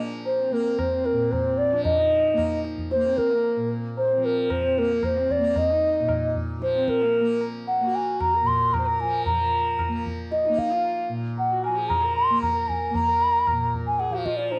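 Serene and meditative, this Hindustani classical piece moves at 114 BPM in a straight 7/4, cut from a longer performance and captured at home on cassette with light reverb. An airy, hollow bamboo bansuri sits up front carrying the melody with vibrato, crisp attacks and rolled-off highs, while a distant, woody sarangi glides beneath it as a second line with portamento, light vibrato and the ring of sympathetic strings. A softly plucked, buzzing tanpura drone shimmers from the first second, and a high-tuned, closely heard tabla with a short ring enters together with the bansuri at 0.3 seconds, the music shifting into a new section at 9.3 seconds.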